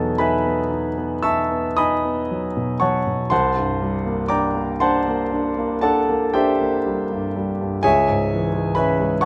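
Impressionist solo piano in the classical tradition, this brief fragment of a longer piece unfolds in a luminous, serene mood at a slow 37-44 BPM in 9/8, with a freely breathing rubato feel. A concert grand carries everything alone across its 9.3 seconds, ranging from deep bass at C2 up to E6, its tone intimate and polished with long sustain. The instrument sits up front and present, and the close, detailed miking lets the sounds of the action come through beneath the notes. The harmony drifts from Emaj9 to C9 at 3.3 seconds, then settles at 7.8 seconds on a rootless F#9sus4 over C#, leaving the phrase suspended. Light reverb adds a gentle halo around the glowing, unhurried chords.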